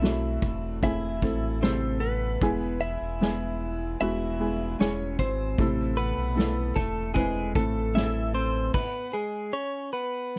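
A hopeful, emotional pop ballad excerpt with little reverb, in which a clean, picked, compressed electric guitar with slapback echo carries the melody over a soft, felt-muted upright piano, a deep sine sub bass with octave, and a distant, roomy soft-mallet drum kit with punchy kick and a rolled-off top, until the bass drops out at 8.7 seconds and the piano at 8.8, leaving guitar and drums to ring over a G#madd11 chord.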